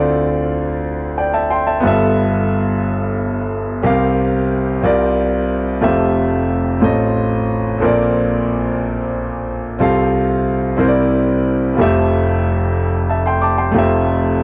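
A clear, up-front concert grand piano plays alone through this soulful, reverent gospel passage in F major, moving at a slow 60 BPM in a straight 6/8 feel. It ranges from a deep bass F1 up to D6 over rich chords like Dm7, G13, Fmaj9 and Bbmaj9, with light reverb on a dry, close 1970s-style studio sound, cut from a longer piece.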